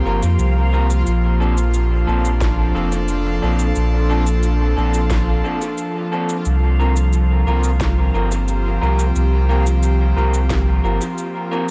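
Spacious and peaceful, this ambient dub excerpt moves at 89 BPM in a straight 4/4, cut from a longer piece and tuned slightly low. An airy, breathy pad with a chorus sheen sustains chords that move from C7sus4 to Bbmaj9 at 1.1 seconds and back to C7sus4 at 6.5 seconds, while a round sine sub bass sits up front, deep and mellow. In the background, a reversed, granular texture swells with a dreamy, detuned shimmer and its own reverb. An electric guitar through a small old amp plays twangy, slightly broken-up stabs that trail off into dub echo, and an electronic cabasa with a woody snare carries its own echo too. A very quiet, tape-toned electronic kick enters at 2.4 seconds, all set in a light digital ambience.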